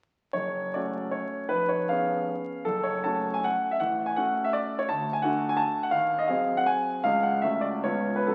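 Dotted rhythms drive this romantic classical dance in 3/4, a short cut from a longer piece in F# minor whose rubato lets the tempo drift between 130 and 178 BPM, giving it a capricious, wistful air. A solo concert grand piano plays from 0.3 to 8.3 seconds, sitting up front with a clear, natural tone, deep bass and long sustain, moving from F#m through D and G#7/D# to end on C#7. The sound carries the crackle of a very old 78 rpm record and the wet reverb of a recital hall.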